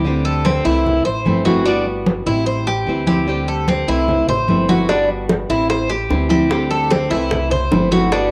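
Up front, a metallic Cuban tres picks arpeggios on its double strings, some of them octave-doubled, and its cassette-tape coloring gives it a homespun edge. This is a relaxed, sunny slice of Cuban son and guajira at 149 BPM in a straight 4/4, cut from a longer piece and circling through D7sus4, C6, Gmaj7 and Am7. A boxy, fingerpicked flamenco guitar, also carrying that cassette tint, fills out the accompaniment beneath the tres, while a woody pizzicato upright bass on steel strings holds down the low end. Ringing, low-tuned congas played with soft hands come in at 0.1 seconds, their tone compressed and saturated. Tight, high-tuned bongos join in the background at 4.9 seconds from a small room. The whole home cassette recording is bathed in wet spring reverb and studio ambience.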